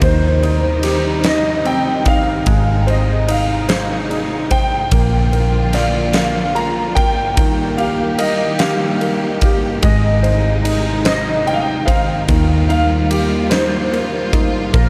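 From the first moment, a concert grand piano sings a heartfelt melody over a second grand piano's accompaniment, sustained strings, electric bass and a big arena drum kit, all together in this romantic six-eight pop ballad excerpt in Eb major. The pulse is slow and straight at 49 BPM, counted in dotted quarters, and the harmony moves through Cm/Eb, Ab, Bb and Eb, then back to Ab before settling on Ebadd9 at 12.3 seconds. The lead piano is clear and intimate, with audible action noise, deep bass and a long sustain, and it carries an ensemble chorus and tape echo. The accompanying piano sounds polished and present, with a shorter sustain. Beneath them, the studio strings are lush and woody, bowed with vibrato, while the vintage foam-muted bass sits dark, round and amped. The drums sit up front, with a punchy kick, a fat snare and bright ride cymbal, and the whole dreamy mix is soaked in a huge ambient reverb.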